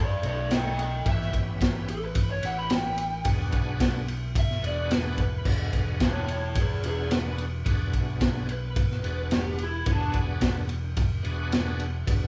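An overdriven lead guitar through a small cranked amp solos over a round, dark fingered bass from the start, joined at 0.2 seconds by a bright, shouting tonewheel organ with key click, chorus vibrato and slow rotary speaker and a punchy, gritty breakbeat kit with dark cymbals sitting up front, in a soulful, swaggering straight-eighth soul blues at 109 BPM in E mixolydian, moving through B9, A9 and E9 in a live room with light reverb before the guitar stops at 10.2 seconds.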